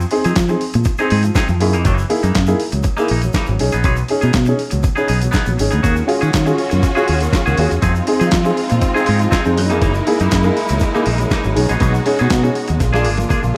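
A dusty, sampler-style soul drum kit sits up front in this sultry, glamorous disco excerpt at 121 BPM, its thumpy kick, fat snare, hi-hat, handclaps and toms sounding gritty, compressed and overdriven. A round, direct fingered electric bass shares that forward placement, while a clear concert grand piano adds boxy, short-sustained accompaniment with audible action noise and deep low end. A bright, twangy electric guitar, picked clean and compressed, fills in the accompaniment, and a grainy, mellow tube shaker sits in the background of a live room. At 5.8 seconds a lush studio string section enters with close, focused bowed chords and vibrato. The harmony cycles through Fm7, Gb13, B6 and Ebm11 before turning to Bb7 as a drum fill arrives at 12.8 seconds, all under light reverb.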